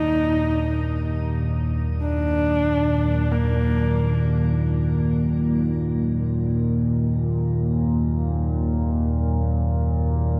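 A moderate, huge ambient reverb hangs over this desolate, unsettling dark ambient drone excerpt, which moves in free time in Eb harmonic minor on an Ebm chord. Up front, a nasal, evolving analog drone with a moving notch sustains low, while a deep, detuned analog pad with phaser and chorus broods in the background from 0.1 s. A husky, woody horsehead fiddle, bowed by one player with vibrato and portamento, carries a short melody through shimmer reverb and delay until 4.6 s, after which the pad and drone hold on alone.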